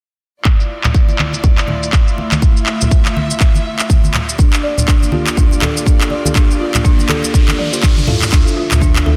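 Spiritual and warm, this afro house excerpt rides a swung groove built on a punchy, up-front electronic kick, a tape-touched house kit of handclaps, shaker and toms with filtered snare, percussion and room, and bright, low-tuned congas with a thin skin. A dark, bowed studio string section holds soft-attacked sustained chords with light vibrato, gently pumping under the sidechain as the harmony moves from Dmadd9 to Gm7. At 4.4 seconds a woody folk marimba with medium mallets enters with rustic, dry arpeggios carried by digital delay, and a deep, nasal chord stab with chorus and decaying plucks soon sits in the background. An electronic riser arrives at 6.2 seconds and runs until 8.3 seconds, joined by a drum fill from 7.6 seconds, and at 8.3 seconds a round sine sub bass lands on D2 as the harmony returns to Dmadd9. The whole sits in light digital ambience with a dense, heavily limited modern master.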